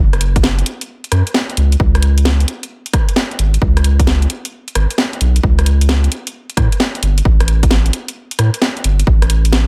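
Moody and skippy, this short two-step UK garage cut at 132 BPM swings its 16ths over a deep, thick triangle-wave sub bass with a fast attack and saturated sustain, while a punchy, layered electronic kick joins an overdriven house kit of hi-hat, rim click and cracking snare, both drum parts sitting up front with the roomy bite of a re-recording in a large space.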